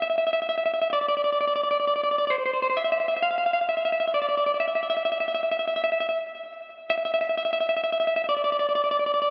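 Rock excerpt, cathartic and cinematic at a slow 65 BPM in straight 4/4, featuring a solo electric guitar through a small old amp, fingered and slightly broken-up with a lo-fi, compressed, up-front tone and tape echo, ranging from C5 to F5 for its 9.3 seconds inside a moderate plate reverb.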